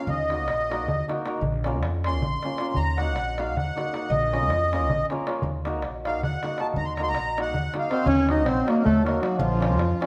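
Heard in a moderate recital-hall reverb, this fiery, virtuosic excerpt of Balkan wedding-band folk races at 316 BPM in eighths through a straight 7/8 in Eb dorian sharp4, as a reedy, sweet accordion with light tremolo tuning solos up front over woody pizzicato upright bass, a shimmering hammered dulcimer and a small, saturated clay-shell darbuka played with soft hands, the harmony moving between Ebm and Bbm until a smooth-topped, mellow clarinet enters at 7.9 seconds to carry the melody in a classical style.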